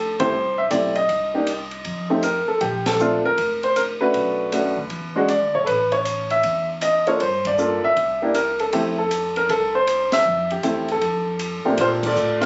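A relaxed, swinging 4/4 groove at 157 BPM drives this short jazz piano trio fragment in F major, with the whole band hitting accents at 0.1, 2.8, 7.4, 10.1 and 12.0 seconds as the chords move from Fmaj9 through Bbmaj9, Gm9 and C7 to F. A clear, up-front upright piano carries the melody, backed by a woody, pizzicato upright bass on steel strings and an open acoustic drum kit with dark cymbals, a high-tuned snare and a boomy kick that joins at 0.2 seconds. The sound has the compressed, dull-topped feel of a phone recording in a club room, with the piano sitting well forward of the bass and drums.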